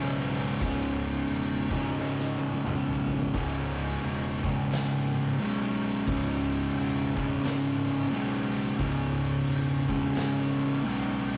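A double-tracked, up-front fuzz guitar grinds out a distorted C# minor riff in this ominous, sludgy stoner and doom metal excerpt at 88 BPM with a swung feel, backed by a growly, overdriven picked bass and an oversized low-tuned kit with a fat snare and punchy kick that enters at 0.3 seconds and throws a drum fill from 2.0 to 3.3 seconds, all captured as a rough rehearsal-room recording with warm saturation and light reverb.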